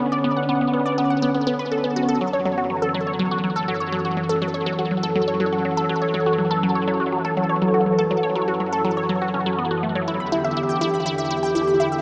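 A juicy, squelchy resonant blip pluck plays a bright riff up front, its detuned sawtooth tone colored by phaser, cassette tape and tape echo, while a swirling, nasal analog pad, also up front, holds sustained chords alongside it with phaser and chorus. This mysterious, cosmic piece of sequencer-driven space music moves at 122 BPM in a straight 4/4, drifting from Bmadd9 to F#m7 at 2.2 seconds and on to Em7 at 10.1 seconds. The dreamy mix is soaked in a huge ambient reverb with a small-speaker character, and this brief cut comes from a longer piece.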